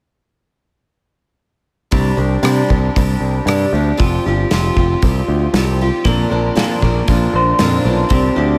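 A dreamy mix soaked in a huge ambient reverb frames this short folk rock and heartland rock excerpt at 117 BPM in 4/4, where from 1.9 seconds a dark, boxy picked steel-string acoustic guitar and a growly, up-front picked electric bass ride over a natural country drum kit with a punchy kick, medium-tuned snare, rim click and hi-hat through Csus2, Fsus2 and Bbadd9, until a slightly broken-up, compressed electric guitar through a small old amp adds a riff at 6.1 seconds, giving the whole a warm, open-road mood.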